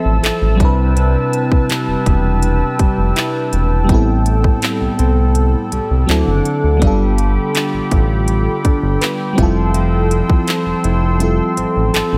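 Set in a digital ambience, this sensual, late-night contemporary R&B fragment is cut from a longer piece and opens with a lush, dreamy FM electric piano with a soft pad layer, treated with chorus and phaser, over a vintage, warbling analog pad with chorus and a bright, fingerpicked nylon-string guitar whose arpeggios trail through delay. A smooth sawtooth-and-triangle synth bass enters at 0.1 seconds, sitting up front, and a trap drum kit follows at 0.2 seconds with a hard-clipped kick, crisp hi-hats and handclaps. The chords move from Fmaj7 through Cmaj7, Am7, D7 and G7 before returning to Fmaj7.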